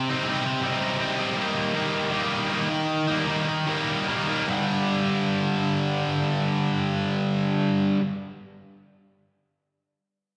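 In a straight 4/4 feel, the rhythm slows down over the first 4.5 seconds before settling into a second passage that runs almost to the end of this short cut from a longer rock piece. A solo electric guitar carries the whole eight seconds, picked and double-tracked, with a tight, bright, distorted tone placed up front. Its chords move from Cm to Eb at 1.4 seconds, then land on a bare G5 power chord at 4.5 seconds, reaching from G2 up to Eb4. The mood is bittersweet yet cathartic. The sound is that of a live gig heard through the venue's PA, with light reverb, a recital-hall ambience and a digital sheen around the guitar.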